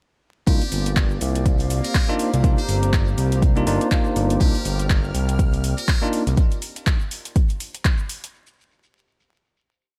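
A buzzy, metal-muted trumpet plays a repeating solo riff with vibrato through tape echo, riding a hypnotic, smooth deep house drop at 122 BPM in C minor that opens on a Cm11 chord at 0.5 seconds. Bell-like electric piano stabs and a syncopated sawtooth synth bass with tube saturation pump against the up-front four-on-the-floor kick, while a detuned analog pad and a warbling, lo-fi tape-like pad arriving at 1.4 seconds sit in the background with chorus. Swung claps, metallic hats and shaker carry the backbeat, a shimmering string-machine violin note enters high at 4.4 seconds, and an echo-heavy digital ambience with vinyl crackle surrounds the mix until the drums finish at 8.3 seconds.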